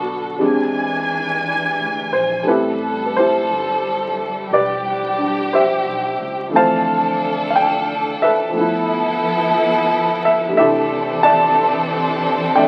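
Heard through the crackle of a very old 78 rpm record and a modest small-room reverb, this romantic, intimate jazz ballad moves at a slow 60 BPM in 4/4 with a gentle swing, cut from a longer piece. A worn, present baby grand piano and a lush, bowed string section with expressive vibrato and a smooth top sit up front, playing through E7alt, Am9, Dm9, G13 and C69. Underneath, a woody, growly pizzicato upright bass stays in the background for the whole 12.7 seconds.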